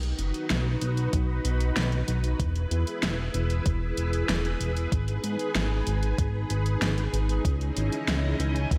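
Synthwave at 95 BPM in G# minor, this nostalgic, moody excerpt moves through B, E, G#m and C#madd9 over its 8.8 seconds. A lush string machine holds sustained chords with a slow attack, its vintage sawtooth tone thickened by ensemble chorus and sidechain pumping. Underneath, a glossy chorused synth bass sits up front, blending pulse-width-modulated pulse and sawtooth with sine under a filter sweep. A produced pop drum kit supplies a fat, overdriven snare and hi-hats in gated reverb, and a thumpy, tape-tinged electronic kick joins at 1.1 seconds. Light reverb gives the whole a soft, retro sheen.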